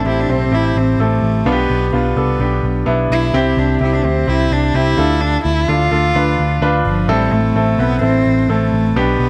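Piano-driven pop at 128 BPM in 4/4 with a warm, hopeful mood, this short passage cut from a longer piece sets an intimate, bowed cello melody with light vibrato and an airy bow over a clear, polished concert grand piano accompaniment. A vintage foam-muted picked electric bass adds a round, punchy low end, and all three parts play throughout the 9.3 seconds over a progression that moves from Am through G/B, C and Dm before returning to Am. The dark production sits in moderate scoring-stage reverb with small room ambience, keeping each instrument up front.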